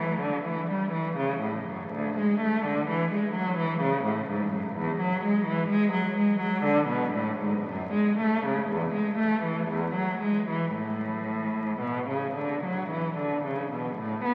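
A rich, bowed solo cello sits up front from 0.0 to 14.3 s in this radiant, serene baroque-style suite movement in A major, moving in a slow, rubato 3/4 at 54-65 BPM with expressive vibrato, soft attacks and gliding portamento, all bathed in a lingering cathedral reverb and the crackle of a very old 78 rpm record, cut from a longer piece.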